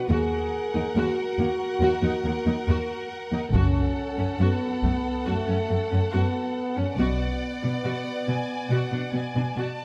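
Cinematic, epic orchestral film score with a heroic, relentless mood, heard here as a brief cut from a longer piece in a steady 4/4. A distant, expressive violin section carries the melody up high, while a second violin section plays a focused, lush line beneath it, and a close viola section fills in the accompaniment with rich vibrato. French horns hold sustained chords with light vibrato, and the low end rests on an up-front cello section with a soft attack alongside a smooth, even double bass section that drops out at 7.2 s. A close, dry taiko ensemble struck with hard sticks comes in between 3.5 and 5.2 s. The harmony moves from D#m to F#m to Bm, and the strings and horns sit in a moderate scoring-stage reverb.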